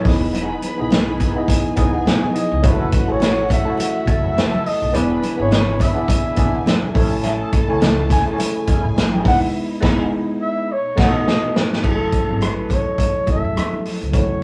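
A worn, slightly out-of-tune tine electric piano, a warm flugelhorn lead with scooped notes and light vibrato, a dark bowed string section carrying a second line over very quiet sustained string chords, and a dark, slightly broken-up picked guitar riff with wah and tremolo open this bittersweet, silky 1970s-style soul cut at 104 BPM in F# dorian with a 16th-note swing. They are joined at once by a woody pizzicato upright bass, a punchy up-front vintage drum kit with dark cymbals, and very quiet hard-handed congas. The band hits an accent from 9.5 s, and the guitar and the string second line drop out at 11.2 s. The drums fill toward a new section at 11.8 s, where the sustained string chords fall away, all in a rough rehearsal-room sound with small-room ambience and studio reverb.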